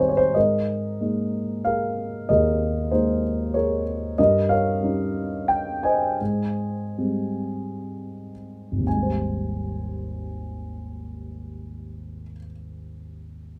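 A rubato lilt in triple time carries this lyrical classical solo piano fragment, hopeful and relaxed, which slows from 4.2 to 8.9 seconds before a new section begins. The dark concert grand sounds mellow and boxy, with deep bass reaching from Ab1 up to Ab5, moving from a suspended chord through Eb7/G to a settled Abmaj7. Close, detailed microphones with little reverb place the piano up front.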